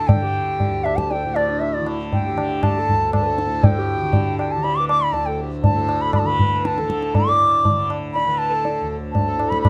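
Set in a dark, warm mix with a modest small-room reverb, this short radiant and serene Hindustani classical passage moves at 119 BPM in a straight 7/4. A pure, bamboo-toned bansuri carries the melody up front with a tongued, reedy brightness. A close, nasal, breathing harmonium plays a full second line beneath it, and a softly plucked tanpura sustains a buzzing, shimmering drone. A low-tuned, dry tabla with a short ring enters at 0.1 s, and the music moves into a new section at 7.1 s.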